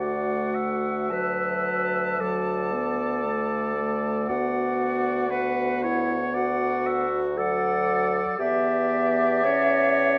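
Classical slow romantic movement for wind quintet in D major at 58 BPM in a rubato 4/4: a tender passage, cut from a longer piece, in which a pure, vibrato-tinged silver flute carries the melody above the oboe's second line, a warm clarinet and a dark, soft-attacked French horn play the accompaniment, and a mellow bassoon holds the bass, as the harmony moves from D through Bm/D at 4.3 seconds to Em7 at 8.4 seconds, captured by close, detailed microphones within a moderate recital hall reverb.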